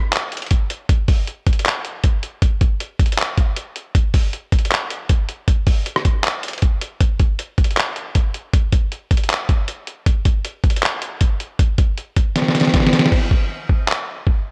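The recording has a dark, warm production with a touch of light reverb, and it sounds cut from a longer piece. This is a hard-hitting hip hop groove at 157 BPM in 4/4, felt in half-time. A lo-fi, sampler-style drum kit carries the whole track, sitting up front with a compressed, pitched-down, muffled character, as if re-recorded in a small room. A thumpy kick and medium-tuned snare anchor the kit, joined by hi-hat, rim click, handclaps and crash cymbal. The groove shifts into a new section at 7.0 seconds, a drum fill arrives at 12.4 seconds, and a break begins at 13.1 seconds before the drums stop at 14.4 seconds.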